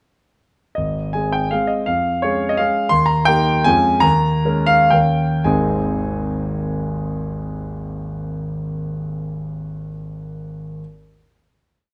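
A warm concert grand piano opens at 0.8 s alone, playing a graceful, rustic romantic waltz in Ab major in 3/4, with a single-line melody in dotted rhythms over a waltz bass. The tempo moves freely with rubato between 105 and 184 BPM and slows from 2.4 s as the harmony passes through Db/F, Eb and Eb7sus4 to Eb7. It lands on a final Ab chord at 5.5 s. The piano sits up front with a deep bass and is wrapped in a moderate stone-room reverb.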